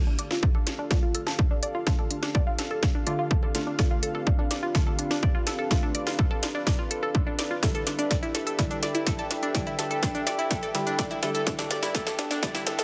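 Melodic techno in a hypnotic, dramatic mood, this excerpt from a longer piece is one continuous build-up over a drum fill, with an overdriven electronic kick and a techno kit of cracking snare, smooth hi-hats and toms up front, while a plucky analog bass sits barely audible beneath. A bright, nasal analog pluck spins arpeggios under a filter sweep, treated with chorus, phaser and dub echo, alongside muted, detuned dub chord stabs that also echo. Two dark background pads, one smooth and sustained and one warbling and lo-fi with a nostalgic feel, breathe with sidechain pumping in a lush hall, and a very quiet riser creeps in at 9.5 s.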